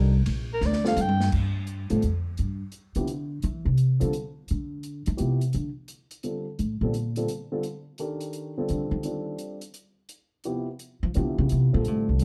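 Hypnotic and searching, this modal jazz excerpt moves at a brisk 171 BPM in a swung 3/4, with a dark, warm production under light reverb. A breathy soprano saxophone opens with a brief, whispered solo from 0.5 to 1.3 seconds, its light vibrato and soft attack set close and intimate, bathed in plate reverb, while the drums slip in a fill beneath it. From 1.3 seconds the upright bass takes over with a solo that runs to the end, its pizzicato tone woody, growly and thumpy, sitting up front. A dark upright piano accompanies throughout with mellow, long-sustaining voicings, moving from a rootless Ebmaj7 to Fmaj7sus2, Ebmaj9 and Fmaj9. The acoustic drum kit, entering just after the start, sounds airy and polished, with dusky cymbals, a medium-tuned snare and a boomy kick.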